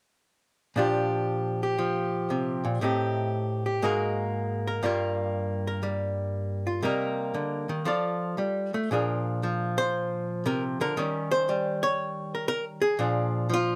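An up-front, dark and clean electric archtop guitar, picked and compressed with a hollow-body tone, plays solo jazz from 0.8 to 13.8 seconds in this swinging, warm excerpt at 118 BPM in Bb mixolydian, its loose rubato swing feel carrying rich chords like Bb69, Am7b5 and Gm7 before turning to dominant sevenths at 8.9 seconds, all set in light reverb.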